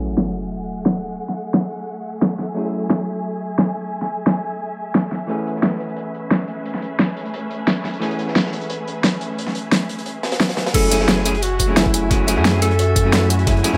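A light reverb and small-room ambience, softened by a low-pass filter, give this dreamy, soulful liquid drum and bass fragment at 176 BPM a close, hazy sound, with a gentle 16th-note swing in F# minor. It opens on an electronic sub drop and impact as a dark, clean hollow-body jazz guitar with delay and a muted, veiled string section with vibrato hold an F#m9 chord, while an overdriven pop drum kit sits up front with a fat snare, crash, hats and tambourine. At 5.3 seconds the harmony moves to B13sus4 and a dark, rolled-off breakbeat kit joins in the background, its hats and snare thinned by high-pass filtering, all under a filter sweep that builds toward the drop. At 10.7 seconds the drop lands back on F#m9, bringing a deep, thick saturated sub bass and a knocking, overdriven electronic kick. A mellow alto saxophone with subtone, scooped notes and delay takes the melody there, closing the fragment on a smooth, jazzy lead.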